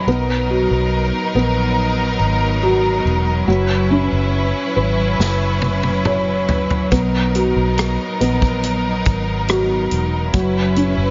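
A felt-muted upright piano carries the accompaniment in this hopeful, heartfelt pop ballad excerpt, its soft, intimate tone set in B major at a slow 70 BPM in a straight 4/4. A rich studio string section sits up front with smooth, bowed sustained chords and vibrato, while a vintage muted fingered electric bass adds a dark, round low end, all three playing from the start. The harmony moves between Bmaj7 and F#7sus4, giving the passage a tender, unresolved lean. At 5.2 seconds an acoustic drum kit with a punchy kick and medium-tuned snare comes in through a fill that runs until 6.9 seconds, the kit drawing on hi-hat, kick, snare, rim click and toms. Light reverb and a studio ambience wrap the mix in a mellow, closed-in sound with a softened top end.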